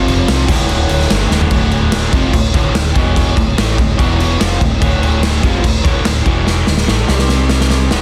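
A dense, heavily limited mix with small-room reverb carries this aggressive, driving hard rock excerpt at 146 BPM in D dorian, where a double-tracked, overdriven guitar riff and a dark, round fingered bass are joined by a saturated, gritty garage drum kit with a boomy kick and a pumping room sound, with drum fills at 1.3 seconds and from 6.5 to 8.0 seconds.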